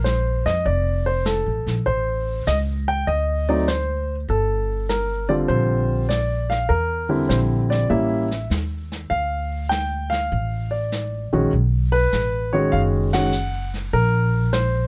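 A grand piano, pizzicato upright bass and brushed drum kit start together in this playful, swinging jazz trio fragment, cut from a longer piece, with the warm piano carrying the melody and the woody, steel-strung bass up front beside it. Brushes sweep the snare alongside hi-hat, ride and a boomy kick, with dark cymbals, sitting further back in the mix, while the harmony moves through altered and extended chords such as Gm9, A7b9 and B9. The dry, close-miked sound keeps every detail clear, and the band hits a short accent together at 13.0 seconds before settling on a Bbsus2 chord.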